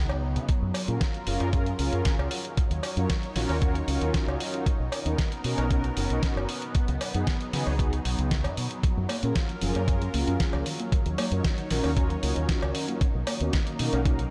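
Feel-good, groovy nu-disco at 115 BPM in F# major, where a thumpy, up-front electronic kick and a gritty, dusty soul sampler-style kit with a fat snare and hi-hat join a bright, envelope-filtered fingered electric bass, a background cowbell, a lush phaser-tinged unison pad and mellow brassy synth brass with tape echo over F#maj7, D#m7, Bmaj7 and C#9sus4 chords, the pad and brass pumping, until a soft, round pluck with 12-bit grit and diffuse delay joins with arpeggios at 8.8 seconds in a dreamy, reverb-soaked mix cut from a longer piece.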